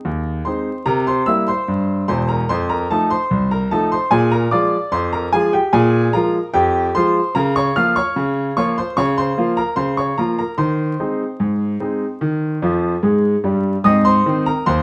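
Ragtime piano in a lively, jaunty mood, a short cut from a longer piece at 74 BPM in a straight 2/4, set in Ab major with the tuning sitting slightly low at A4 = 438 Hz. A clear, natural grand piano plays solo and up front across a broad span from E1 to F6, moving through C7, F7 and Bb7 before settling via Bbm/Db and Ab/Eb onto Eb. A piano fill from 12.6 to 13.9 seconds brings the phrase home to Ab, all framed by moderate studio reverb and a layer of vinyl crackle that lends an old-record patina.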